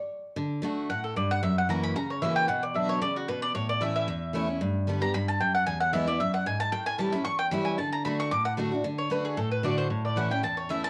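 Bluegrass fragment with a rustic, lively mood and a light swing, cut from a longer piece. A bright, full-bodied dreadnought guitar picks the accompaniment from 0.4 seconds, and a woody, double-strung mandolin enters at 0.9 seconds to carry the melody as a solo, with both instruments up front. Moderate studio reverb surrounds them, and the whole recording has the worn, warbling pitch drift of old cassette tape.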